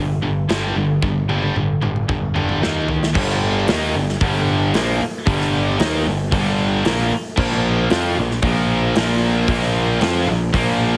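Hard rock excerpt in G minor at 114 BPM, driving and heavy, where a scooped high-gain guitar and a tight distorted guitar in the background play riffs over a growly, direct picked electric bass, while a big-room acoustic drum kit with punchy kick and bright cymbals sits up front and rolls through a fill from 1.0 to 3.2 seconds before a crunchy, double-tracked overdriven guitar joins at 3.1 seconds as the chords move from G5 and Eb5 to Gm and Bb5, all under light reverb and a heavily compressed radio sound.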